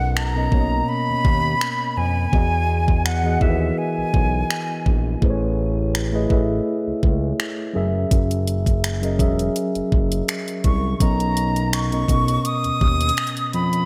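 A dreamy, reverb-soaked mix with a lush hall ambience opens this short, tender contemporary R&B fragment, moving at 83 BPM in B major with a light sixteenth-note swing. A mellow, clean tine electric piano sits up front throughout, carrying the harmony from Bmaj7 through Emaj9, Amaj9 and F#7 before settling back on Bmaj7. Beneath it, a smooth synth bass with a sawtooth edge and a touch of ring modulation supplies a warm low foundation, its notes striking with a fast attack and then sustaining. The electronic trap kit, entering at 0.2 seconds, pairs a knocking kick with bright hi-hats and finger snaps, all kept close and present. An airy silver concert flute, tongued and slightly unsteady with vibrato and a tape echo, sings the melody until 4.9 seconds, then returns at 10.7 seconds to carry the passage to its close.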